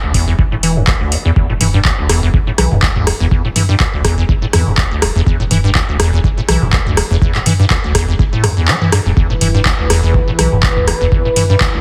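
A squelchy, hollow square-wave acid bass sits up front with a resonant filter pluck, its fast-attack notes decaying through a lush chorus and a cassette-tape grit as it drives a riff across this short cut from a longer acid house track. Beneath it, a thick, sine-based sub bass holds deep, saturated tones that pump against the sidechain, while an overdriven analog drum machine booms forward with handclaps, rim clicks, toms and metallic hi-hats, all re-recorded in a small room. A deep, overdriven electronic kick anchors the swung 4/4 groove, dropping out briefly from 8.7 to 9.2 seconds. At 9.2 seconds a smooth, detuned sawtooth pad enters with soft-attack sustained chords, treated with chorus and sidechain pumping. The mood is driving and raw, framed by light reverb and a heavily compressed, radio-like sound.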